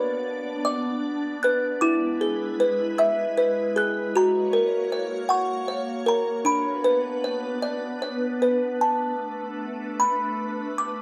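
In a slow, straight 6/8 at 51 dotted-quarter beats per minute, this wistful, dreamy B minor lullaby excerpt pairs a delicate, tinkling music box, slightly out of tune and up front, carrying the melody across a range of D4 to F#6, with a soft, pure organ-like pad holding calm sustained chords beneath it, coloured by ensemble chorus, phaser and its own reverb. The harmony moves from Bm through E and F# to Bmadd9 before the opening section returns at 8.8 seconds on Bm7, all set in a dark, lightly reverberant production.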